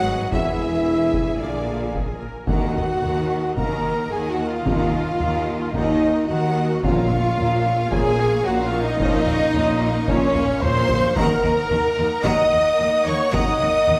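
A dark, epic orchestral film cue opens with nearly the full ensemble, with rich, lush violins carrying the melody high above a second violin line and a wooden, pure baroque flute tracing its own line in the background. Bright violas fill in the accompaniment while mellow, distant French horns, very quiet dark trombones and a smooth, even string section hold sustained chords. Dark trumpets add soft-attacked stabs, and cellos and double basses bowed with vibrato anchor the low end. A distant taiko ensemble struck with heavy sticks drives in from 0.3 seconds, and timpani sound in two brief passages, at 2.5 and 6.8 seconds, as the harmony settles into a brooding minor cast. A drum fill at 10.4 seconds pushes toward the close of this fragment of a longer piece, all set in the roomy reverb of a scoring stage.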